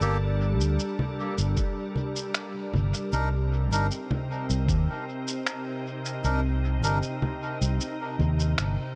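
A soft, organ-like pad of pure sine tones with ensemble chorus and its own reverb holds sustained chords over a dark, round fingered electric bass, muffled, pitched-down sampled shaker, congas and finger snaps up front with studio reverb and dub echo, and reedy, breathy melodica stabs trailing dub echo, in a spacious, hazy ambient dub excerpt at 77 BPM in 4/4 under light reverb, moving from Gmadd9 to Cm7 at 3.1 s, while a thumpy, compressed electronic kick drum enters at 1.6 s and stops at 4.8 s.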